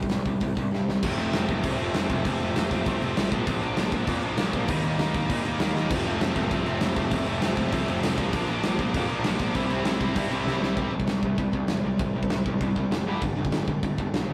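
A rough rehearsal-room recording with warm saturation and stone-room reverb carries this upbeat, rowdy punk rock excerpt at 197 BPM, where a bright, up-front overdriven guitar riffs throughout over a big drum kit with a fat snare, punchy kick and short fills, a growly fuzz bass sits in the background, a very quiet dark double-tracked fuzz guitar joins at 1.0 s, and a very quiet sludgy guitar returns at 5.9 s as the chords move from F through Bb and Eb before closing on C5 and G5.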